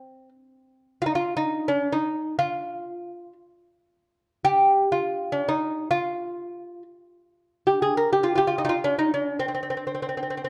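Longing and soulful, this short passage cut from a longer Persian modal ensemble piece features a lone acoustic lute, fingerpicked on delicate, double nylon strings with some octave-doubled courses, playing between C4 and Bb4 from 0.0 to 10.5 seconds, placed up front in a dark, warm production touched with light reverb.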